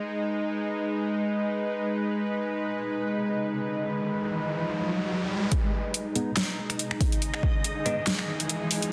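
A tense, detuned string-like drone sustains a G# minor chord up front, settling to a G#5 at 5.5 s, through this dark, heavy deep dubstep excerpt. It is joined by an electronic riser from 3.2 s before a punchy overdriven kick and a kit with a huge snare, bright tape-warm hats and finger snaps arrive at 5.5 s, while a reversed, dreamy granular texture and bell-like electric piano stabs with phaser, dub echo and a filter sweep sit in the background of a dense, echo-chamber mix.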